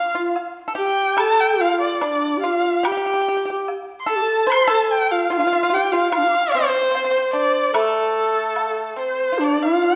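This Chinese traditional piece for a small chamber ensemble is graceful and tender, moving at a rubato 73 BPM in 2/4 in the A jue mode. A dark, expressive erhu carries the melody from the start, its bowed single line sitting up front with vibrato and portamento. Entering at 0.2 seconds, a bright, reedy end-blown bamboo xiao adds a second line with a pure straight tone and crisp attack. Underneath, a fingerpicked pipa supplies a lower, dry, percussive second line. A close woodblock plays in the background from 0.4 to 8.7 seconds, and the ensemble sits in a recital hall with a lush reverb, in a short clip cut from a longer piece.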